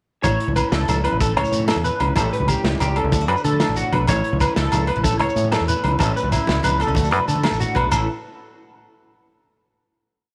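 Sunny and carefree, this short highlife guitar band piece rolls along at 125 BPM in a straight 12/8, with a lo-fi, slightly broken-up electric guitar ostinato of arpeggios up front, coloured by analog chorus and slapback echo, over a round, syncopated fingered bass riff and a fingerpicked flamenco guitar accompaniment moving through A, A7 and D. A gritty, saturated breakbeat kit with dark cymbals and a punchy kick drives the groove alongside a ringing agogo bell time line, a grainy shekere and very quiet, soft-handed congas, all in a small room with light reverb. The groove gives way at 7.9 seconds to a final A5 chord that rings out to 9.8 seconds.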